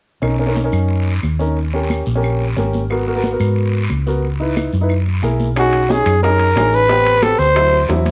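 Afro-Cuban jazz in B major at a lively 180 BPM, this sunny excerpt from a longer piece moves in a straight 4/4 through a chord sequence that runs from Bmaj7 through G#m9 and C#m7 to a closing D9. A polished grand piano carries the accompaniment while a dark, round hollow-body electric bass sits up front, joined from the start by background congas with a damped, thick-skinned sound, a raspy guiro and woody, saturated claves. At 5.6 s the music shifts into a new section, where tight, high-tuned bongos and ringing metal-shell timbales join the percussion. A growling trumpet takes the solo at that point, playing a jazz-style line with vibrato that sounds gritty and punchy, with a cassette-tape coloring on its tone. The whole piece has the character of a home cassette recording, set in a moderate studio reverb.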